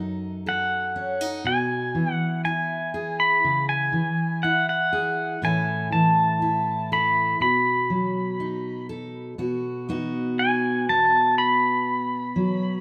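A full-bodied, fingerpicked steel-string acoustic guitar opens this tender, heartfelt folk-pop ballad at a slow 60 BPM, moving through chords from B7 to E/B, C#m, A and back to B7. At 0.5 seconds a bright, twangy electric pedal steel guitar joins up front, carrying the melody high with slide and volume swells over a clean, compressed tone. A moderate plate reverb gives the pair a spacious sheen, and at 9.4 seconds the piece shifts into a new section resting on B.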